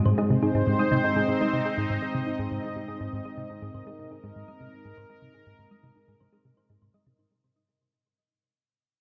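A tight, driving sequenced synth anchors this short cut from a longer piece of ambient, sequencer-driven space music, its detuned sawtooth riff sitting up front with a mellow, plucky edge shaped by chorus, phaser and delay. Alongside it a sweeping resonant pad holds sustained chords, its evolving, full-bodied tone built from sawtooth and sine layers with a sub octave, a slow attack and a filter swell, also placed up front and thickened by chorus. Farther back, a round, tine-like thumb-piano-style pluck spins gentle arpeggios with a dark FM sheen, softened by chorus and delay, while a filter sweep and a fade-out run across its part. The groove moves in a straight 4/4 at 122 BPM around a centre of Ab, tuned slightly sharp to A4 = 441 Hz. A lush hall reverb with a 2.9-second tail and tape saturation give the dark, warm production an expansive, cosmic feel over its 7.3 seconds.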